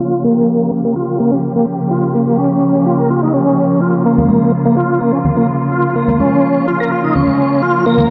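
Funky and gritty, this breakbeat excerpt from a longer piece rides a straight 4/4 groove over a single B-flat minor chord, with a lush symphonic string section holding bowed, vibrato-rich sustained chords up front. A full, lightly overdriven tonewheel organ plays a riff through chorus vibrato and a slow rotary speaker, its tone shaped by a low-pass filter sweep and dub echo. Bright, thin-skinned congas join at 4.2 seconds, close and dry under soft hands but trailing dub echo, all set in a moderate spring reverb within an echo-heavy, filtered mix.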